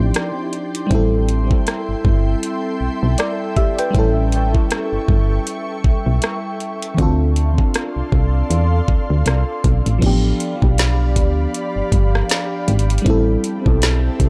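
A dry, echo-heavy mix frames this moody, longing stretch of contemporary R&B in A minor, moving at 79 BPM with a swung sixteenth-note feel. Up front, a soft, dark FM electric piano with chorus, phaser and analog delay carries the accompaniment over a punchy, round FM bass and an electronic drum kit with a knocking kick, woody snare, rim click, metallic hats and crash. Above them, an ethereal, detuned pad with ensemble chorus and its own reverb holds slow-blooming chords as the harmony moves through Am7, A7 and Dm7, shifting at 10.0 s to G7/A before settling back on Am7.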